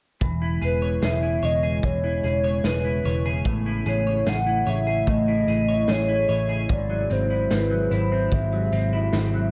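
This blissful, dreamy dream pop excerpt opens at 0.2 seconds with four parts arriving together: a warbly, nostalgic tape-like pad holding sustained chords through chorus and its own reverb, a clean semi-hollow electric guitar picking arpeggios through analog chorus and digital delay, a dark, foam-muted vintage bass sitting low and round, and a raw garage drum kit of kick, snare and hi-hat. At 0.6 seconds a hollow, woody clarinet-like synth lead enters with the melody, soft and dark with vibrato, chorus and digital delay. The lead and the bass sit slightly forward in the mix. The drums sound gritty and saturated, with a punchy kick, a medium-tuned snare and a rolled-off top in a small, pumping room. The harmony drifts from E6 to Amaj7 and then to a G#aug7, all under a light reverb that keeps the lo-fi haze intact.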